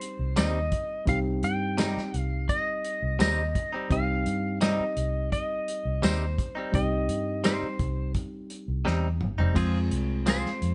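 A straight-eighth soul blues groove in 4/4 sits at 85 BPM, brooding and mournful in C minor, in this short section cut from a longer piece. A warm, up-front soul drum kit from a small room anchors it with a punchy kick, medium-tuned snare, dark cymbals, hi-hat, tambourine and toms, and a drum fill runs from 8.9 to 9.6 seconds before the harmony moves from C minor to F minor at 9.6 seconds. Underneath, a vintage foam-muted fingered electric bass adds a round, amped low end, also up front. The clean lap steel guitar carries the melody with compressed slide lines and volume swells. A lightly overdriven electric piano supplies reedy, barky accompaniment through its built-in speakers. From 0.4 seconds a direct-recorded electric guitar adds bright, twangy, picked stabs, all captured as a band playing live in one room with light reverb and a dark top end.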